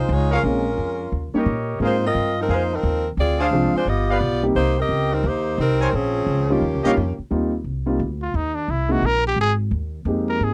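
Swinging eighths drive this joyful, brassy jazz fragment, where a tight, vibrato-rich saxophone section carries the melody over woody, thumpy pizzicato upright bass and a natural-sounding grand piano with deep lows, while a mellow trumpet section adds smooth-topped stabs, until the saxophones stop at 7.2 seconds and a clear, punchy solo trumpet takes the lead from 8.2 seconds in a dry, close, 1970s-style studio sound with light reverb.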